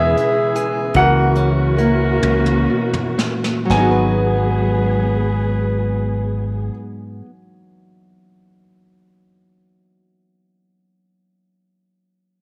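In a slow, straight 6/8 that slows down through the opening bars, this intimate, melancholic acoustic folk-pop ballad moves from Emaj7 through F#7/C# before settling on G#m7 at 3.7 s. Soft brushes on a distant, roomy kit with a tight kick mark the pulse and play a drum fill before falling away at 4.0 s, while a round, up-front fingered electric bass anchors the low end. A woody upright piano with long sustain carries the melody, shadowed by a classical-style clarinet with a soft attack playing a second line. Beneath them, a dark string section bowed sul tasto with vibrato lays down lush sustained chords, and a bright, clean, compressed electric guitar, recorded direct, adds picked accompaniment. A warm Celtic harp rings in the background with fingerpicked arpeggios and is the last part heard, sounding until 9.9 s, all set in light reverb and small-room ambience.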